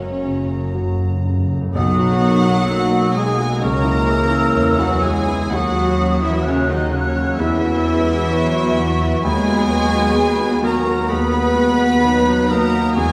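A tender, hopeful cinematic film score for orchestra unfolds in a slow, rubato 4/4, and this brief excerpt is cut from a longer piece. Chamber violins carry the melody with vibrato, a soft attack and a sul tasto hush, while a second violin line, a dark, woody viola section and a grand piano with audible action noise and long sustain fill in beneath them. A mellow French horn section holds distant sustained chords, and floating, pure cellos and double basses played sul tasto anchor the bass. Soft-mallet timpani with a round, calf-head tone open with a fill before dropping out at 3.1 seconds. An airy flute ensemble enters at 1.7 seconds and a clear, smooth-topped solo clarinet at 1.8 seconds, adding second lines as the harmony settles into Bmaj7, C#m, D#m7, Esus2 and B/D#, all heard from further back in a scoring stage's wet reverb.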